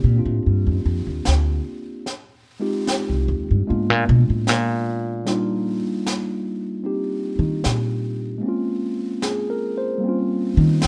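A pizzicato upright bass takes the solo in this romantic, intimate jazz ballad excerpt, its woody, thumpy steel strings sitting up front from 0.0 seconds. A bright, barky tine electric piano comps cleanly and directly beneath it over lush harmony such as Fm9, Bb7b9 and Ebmaj7, while brushes on a high-tuned snare join at 0.4 seconds. The close, detailed recording has little reverb, though the drums carry a hint of a small room.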